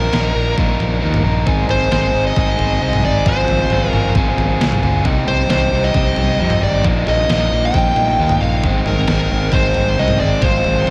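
A dark, smooth overdriven lead guitar carries the melody in this moody, bittersweet indie rock piece at 134 BPM, over a bright, compressed, picked electric guitar riff, a growly, punchy fuzz bass and a detuned 8-bit drum machine with a thumpy kick, medium-tuned snare and toms that enters at 0.1 seconds, the dreamy mix soaked in huge ambient reverb as the chords move from Bbsus4 through Ab, Fm/Ab and Cm to Abadd9.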